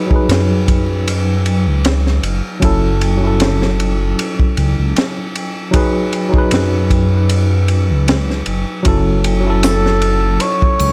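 Awash in studio reverb, this hypnotic, melancholic trip hop fragment rests on a worn, slightly out-of-tune tine electric piano with harmonic tremolo, sampler grit, tape echo and a filter sweep, over a crunchy breakbeat kit with a punchy kick, high-tuned snare and dark cymbals, and a deep, rumbling detuned saw bass up front, until a veiled bucket-muted trumpet enters at 9.3 seconds and a distant tube shaker and triangle join at 9.6 seconds.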